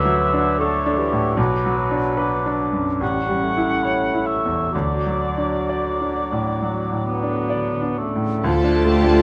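Classical music with a lush, passionate mood, moving at a rubato pace of 59-78 BPM in 4/4 and set in D major, this passage is cut from a longer piece. A bright, brilliant grand piano carries the melody up front, while a clear clarinet, a hollow concert flute with vibrato and a mellow, roomy cor anglais weave second lines in the background and a clear bassoon with a soft attack adds accompaniment. At 7.1 seconds a mellow French horn section enters with sustained chords, joined by a cello section on the bass with a focused, smooth top. At 8.5 seconds the harmony turns from D major to D minor as violin sections enter with melody and a second line, alongside a rich viola section with portamento and a double bass section holding a low D. The sound is close and detailed with light reverb and a faint mains hum.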